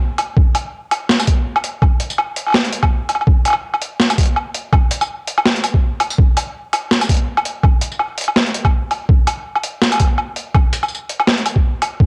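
Cinematic and spacious, this drum and bass fragment from a longer piece rides a swung, half-time feel carried entirely by percussion. A boom bap sampler-style kit with hi-hat, a high-tuned snare, tambourine and woodblock sits up front beside a thumpy electronic kick, both pitched down, compressed, overdriven and saturated with cassette tape grit, then re-recorded in a large room. The home cassette recording adds a light reverb that gives the gritty beat a roomy, lo-fi haze.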